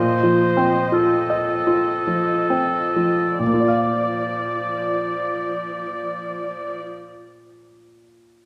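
In a rubato 3/4 that moves between 42 and 64 BPM and slows through its first 3.4 seconds, this lush, passionate fragment of a romantic classical movement in Bb major sets a clear, present grand piano melody with short sustain up front over a warm oboe second line with light vibrato and an intimate chamber viola section playing soft-attack, bowed sul tasto accompaniment with vibrato, moving from F7/Bb to Bb within a moderate concert hall reverb, the oboe and violas stopping at 6.8 seconds as the piano carries on alone until 8.5 seconds.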